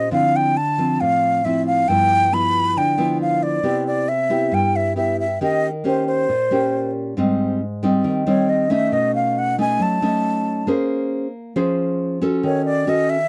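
Set in a straight 4/4 bossa nova groove, this short clip, taken from a longer piece, feels relaxed and breezy. A breathy concert flute carries the melody up front, its tongued notes shaded with vibrato and lifted highs for an expressive, warm voice. Beneath it, a fingerpicked nylon-string guitar supplies full-bodied, deep classical accompaniment, with the occasional finger squeak adding an intimate touch. The harmony drifts through rich colours such as Dm9, Cmaj7, Abmaj7 and B9, and from 7.2 seconds the flute moves into a solo over the second section. The sound is a dry, close 1970s-style studio recording with a moderate booth ambience that keeps both instruments near and warm.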